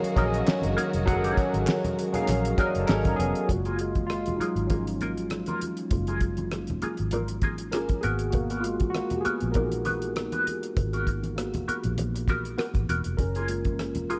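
Smooth, warm 1970s-style soul with light small-room ambience, where a lush bowed string section and very quiet, crisp group handclaps color the opening before a bright, barky, chorused tine electric piano takes the solo from 3.5 seconds over cloth-damped thuddy drums with a fat snare and tight kick, soft low-tuned congas, a slightly broken-up lo-fi guitar riff through wah and tremolo, and a round, foam-muted fingered bass.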